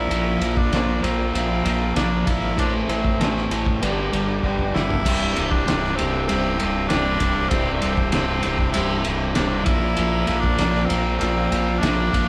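A straight, driving 4/4 groove from a cloth-damped, thuddy drum kit with a fat snare and muffled, dark cymbals anchors this sunny classic rock excerpt, with a drum fill at 4.4 seconds leading into the repeat of the section at 5.1 seconds. A raspy, forceful tenor saxophone carries the melody with light vibrato over riffs from a bright, overdriven semi-hollow guitar and a sludgy distorted guitar set in the background, while a fingered electric bass adds a punchy, overdriven growl beneath. A woody upright piano and a thick tonewheel organ with fast rotary speaker and key click sit very quietly under the chords, the band playing live together in a stone room with moderate reverb.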